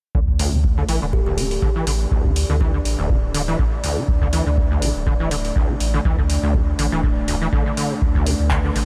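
A squelchy, gritty acid bass riff with tube saturation, chorus, delay and a filter sweep drives this hypnotic, lightly swung 122 BPM acid house cut, set over a dry, deep electronic kick, a booming analog drum machine with handclaps and metallic hi-hats, a round sine sub bass and a moody, detuned sawtooth pad, the last two pumping with the sidechain, while a woody kalimba plucks a brief delayed melody in the background from 1.1 to 2.7 seconds in a light reverb.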